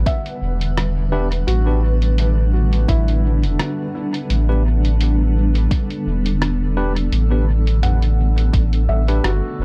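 A dark, dry production with a deep low end opens this short ambient dub excerpt, a meditative piece at 85 BPM in 4/4 with a gentle 16th-note swing, resting on a G chord. Up front, a round sine sub bass holds sustained low notes with tube saturation, while an overdriven electronic kick, layered and re-recorded in a large room, sounds from 0.1 seconds until 8.7 seconds. A muffled, pitched-down sampler-style kit adds compressed hi-hat, rim click and toms soaked in dub echo. Above them, a granular cloud pad spreads blurred, evolving sustained chords with a slow attack, a moving notch and its own reverb. A soft felt-muted upright piano plays intimate arpeggios with audible action noise, short sustain and tape echo, and from 1.1 seconds a clean tine electric piano, heard through its built-in speakers, adds stabs sent into dub echo.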